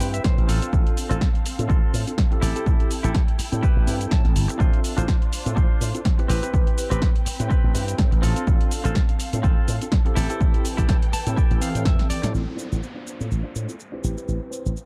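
A punchy, tape-warm analog drum machine sets a swung 124 BPM groove in 4/4 with hi-hat, shaker and snare, while an up-front electronic kick drives the pulse from 0.2 s until 12.0 s, followed by a short drum fill and a band accent at 12.2 s. This funky, nostalgic slice of filtered disco house in A minor pumps a growly, envelope-filtered slap bass, a twangy, compressed clean electric guitar riff with fills, a phased tine electric piano and veiled, muted strings through sidechain ducking and a sweeping low-pass filter, over chords that move between Am9, Dm7/A and a rootless G9sus4/A. At 12.3 s an electronic downlifter arrives in the dark, dry mix as the music continues past the cut.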